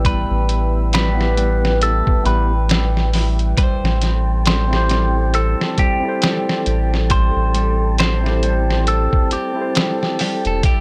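A slow trip hop groove at 68 BPM in 4/4, swung on the sixteenths, rides on a muffled, pitched-down sampler-style drum kit with a thumpy kick, medium-tuned snare and hi-hat, roughened by 12-bit grit and set up front beside a deep, round dub sub bass thickened by tube saturation. The mood is melancholic and cinematic in A minor, with the harmony moving from Em/A to Am7 at 3.6 seconds. A barky, overdriven tine electric piano plays the accompaniment through a combo amp, treated with harmonic tremolo and tape echo. A semi-hollow electric guitar carries a clean, picked melody colored by phaser and tape echo, while a fingerpicked Celtic harp rings out arpeggios beneath it, its tone carrying sampler grit and echo. A detuned sawtooth pad sustains moody chords very quietly in the background, and from 4.0 seconds a breathy, wind-like tuned noise texture drifts in on a single held note. The sound is dry, a fragment cut from a longer piece.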